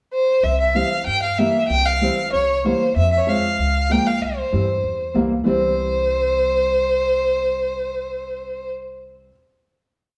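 A straight 2/4 pulse carries this soulful, festive klezmer piece, where an up-front bowed violin with dark, smooth vibrato sings an ornamented modal melody from a brief pickup, a growly, thumpy pizzicato upright bass plays a quarter-note figure from 0.4 s, and a clear, boxy upright piano adds short off-beat triads, the live band sounding together in a stone room's reverb through to a final chord at 5.5 s.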